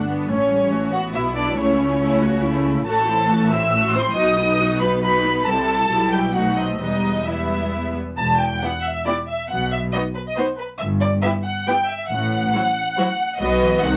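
Spirited and cheerful, this quick classical-period movement for string orchestra moves at 138 BPM in 3/4 with a rubato feel, set in E minor and tuned slightly high to A4 = 443 Hz. The first violins carry the melody up front, their bowed tone rich and focused with vibrato, while a chamber violin section traces a second line beneath them. Violas fill out the accompaniment with a smooth, lush sound, and the cellos sit in the background on the bass, even and rich. Under them the double basses add a dark, expressive foundation with a soft attack, portamento and a smooth top. All five sections play throughout the short passage cut from a longer piece, shifting to a new section at 8.2 seconds as the harmony turns between B, E minor and related chords. A moderate studio reverb and a layer of vinyl crackle give the recording a faintly aged character.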